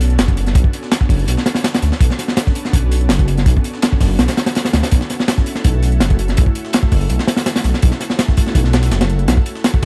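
Drum and bass with a jungle edge, this short excerpt runs at 165 BPM in B minor, its frenetic energy tinged with a nostalgic haze from the vinyl crackle and small room reverb. Up front, a crunchy breakbeat kit of hi-hat, kick and snare sounds saturated and gritty, with a punchy kick, a high-tuned snare and a rolled-off top. Behind it sits a compressed, sampler-style kit of hi-hat and snare, both high-pass filtered. A dark detuned saw bass rumbles deep and beating between F#1 and D2, sustained and prominent. Far back, an ethereal, airy pad holds slow-attack chords with ensemble chorus and built-in reverb, moving from Bm9 to F#m7 at 4.9 seconds.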